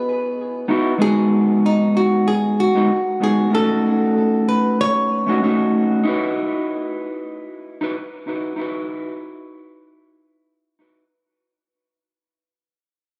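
A 54% swing on the 16ths at 95 BPM in 4/4 gives this wistful, relaxed chillout excerpt its easy lilt: an up-front, fingerpicked flamenco acoustic guitar with a warm tone and audible finger squeak carries the melody until 5.4 seconds over a dark, clean, fingered electric guitar accompaniment, both touched with tape echo and set in a moderate plate reverb, moving through Badd11, G#m7 and a rootless B9/A before the electric guitar continues alone through a fade-out from 6.1 seconds, all captured on a phone in the room and tuned slightly sharp at A4 = 441 Hz.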